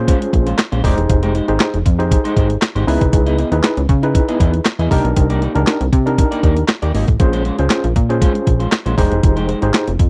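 A dry, close 1970s-style studio sound with digital ambience frames this funky, danceable early-eighties boogie funk cut from a longer piece, moving at 118 BPM in Bb dorian through Bbm9, Fm9, Dbm9 and Cm9 chords, as a crisp 8-bit drum machine with thumpy kick, medium-tuned snare, hi-hat and handclaps sits up front beside a punchy, plucky sawtooth-and-square analog bass, while a barky, gritty tine electric piano with fast tremolo comps through a combo amp and a twangy, slightly broken-up guitar plays a riff bathed in lush chorus.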